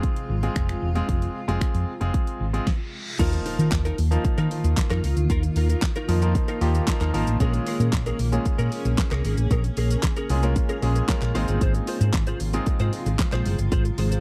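A dry, close 1970s-style studio sound frames this energetic, bittersweet dance-pop excerpt, built on a punchy, up-front pop drum kit with a fat snare, layered with snaps, claps and shaker. Beneath it, a round, dark hollow-body electric bass, a brilliant, short-sustained concert grand piano and a cloudy, evolving granular pad in the background all pump with sidechain. A reverse cymbal leads into an impact at 3.2 seconds, where a clean, compressed direct-recorded electric guitar riff with ensemble chorus enters, and a crisp group handclap stays barely audible from 3.7 seconds.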